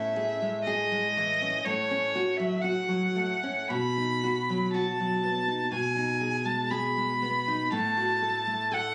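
Tender and lyrical, this short romantic duo moves at a slow, rubato 60 BPM in 4/4. A single bowed violin carries a smooth, even melody with vibrato, and a fingerpicked classical nylon-string guitar supplies bright accompaniment with fresh strings and audible finger squeak; both sit up front over chords moving from Amaj7 through F#m/A, B and G#m/B. Recorded on a phone in a room, the sound has light club reverb and compression.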